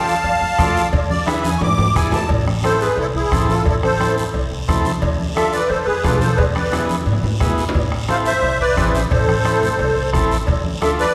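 Passionate and fiery, this short cumbia runs at a brisk 176 BPM in A harmonic minor, cut from a longer piece. A reedy, shimmering musette accordion carries the melody from the opening, close-miked, dry and up front, and it takes a featured solo in the first 2.3 seconds over Dm and E7 before the music settles onto Am. A vintage, buzzy combo organ with light vibrato and overdrive fills in the accompaniment, while a woody, thumpy pizzicato upright bass anchors the low end. The percussion gathers fast: a raspy guiro, ringing low-tuned congas played with soft hands and given a compressed, saturated edge, a soft-beater bombo in the background, and distant metal-shell cowbell and timbales. Drum fills at 1.3 and 6.9 seconds mark the turns of the Dm–E7–Am progression, and a lush scoring-stage reverb lends the whole a church- or concert-hall spaciousness.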